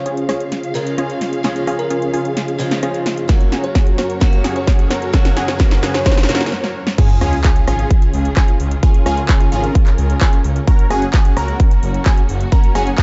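Euphoric and uplifting, this festival progressive house excerpt at 130 BPM builds from a sparkling bell-like electric piano melody, a bright picked archtop guitar with sampler grit, lush bowed strings, a very quiet riser, a filtered supersaw stab riff and a big-room kit with metallic hats, joined by a punchy up-front kick at 3.3 seconds, before a break gives way at 7.0 seconds to a drop where a thick, saturated detuned saw bass and dark, mellow grand piano arpeggios arrive over a pumping, dark production.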